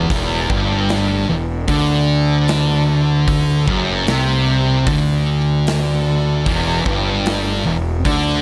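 A straight, slow 4/4 groove drives this ominous, hypnotic stoner and doom metal passage, cut from a longer piece and built on a single E minor chord, with two thick, distorted fuzz guitars picking a low riff (one up front, the other sitting in the background), an overdriven fingered electric bass growling up front beneath them, and a big-room acoustic drum kit with a punchy kick, medium-tuned snare, hi-hat and bright splash cymbal, all set in light reverb.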